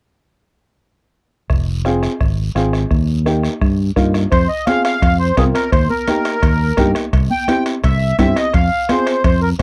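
A straight, danceable cumbia groove begins at 1.5 seconds with round, dark fingered electric bass, soft-beater bombo and raspy guiro, soon joined by a clear, woody, slightly detuned upright piano, before a sweet, reedy accordion with light tremolo tuning takes up the passionate melody at 4.3 seconds alongside ringing metal-shell timbales, with high-tuned congas following at 4.7 seconds in the background, in a dry, close 1970s-style studio sound.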